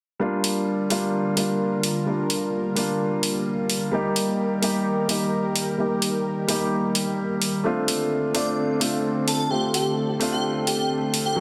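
Emotional and powerful, this festival progressive house excerpt in G minor moves at 129 BPM in a straight 4/4, passing through Gm7, Eb and F6. A dark, mellow grand piano sits up front with dub echo, joined by a thick, detuned sawtooth pad with slow attack and chorus, and an overdriven, layered electronic hi-hat treated with studio reverb. At 8.3 seconds an airy, dreamy sine lead with vibrato, tape echo and a noise layer carries the melody, all within a lush hall reverb and a heavily compressed, radio-style sound.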